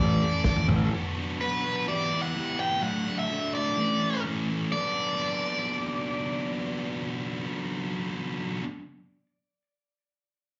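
Heard as a live gig through the venue's PA, this short cut from a longer indie rock piece carries light club reverb with a dulled top end, and it feels restless and cool. A bright, overdriven electric guitar carries the melody up front with slapback echo, while a thick, double-tracked fuzz guitar plays a distorted riff beneath it, also echoed, over chords moving from Asus4 through Bm, Em and D. A direct-and-amped picked electric bass with fuzz sounds only until 0.9 seconds, and a muffled, lo-fi vintage drum kit of kick, snare and toms appears briefly from 0.4 to 0.8 seconds.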